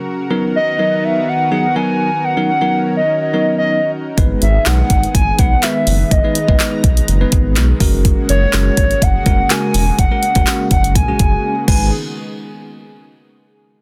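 Bittersweet yet confident, this dance-pop excerpt at 124 BPM in G# minor opens on a lush, warbling, detuned pad with sidechain pumping, joined almost at once by a bright, bell-like tine electric piano and a hollow, woody clarinet-like synth lead, carried up front with chorus and vibrato. A round analog bass and a deep house drum kit of kick, handclaps, hi-hat and crash arrive at 4.2 seconds, set in a dense, heavily limited modern master with little reverb, before a brief silent gap at 11.4 seconds.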